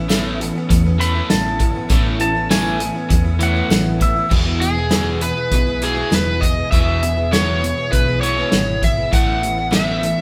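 Hopeful and open-road in spirit, this short cut from a longer folk rock and heartland rock piece moves at a straight, steady stride in four. A clean, twangy pedal steel guitar opens with a solo in its upper register, its slide and volume swells ringing over a shimmering, octave-doubled twelve-string acoustic guitar, a double-tracked overdriven electric guitar riff and a round, dark hollow-body bass. A natural country drum kit sits up front with a punchy kick, medium-tuned snare, hi-hat and crash, joined by a faint, jingly tambourine until 3.8 seconds. In the background, a reedy tonewheel organ holds sustained chords through a slow rotary speaker with chorus vibrato, light overdrive and audible key click. The harmony moves from Aadd9 to E at 4.3 seconds, and at 4.6 seconds an up-front overdriven slide guitar, played with fingerpicks, takes the melody before the chords return to Aadd9 at 9.1 seconds. 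The band sounds like it is playing live together in one room, with a light reverb around it.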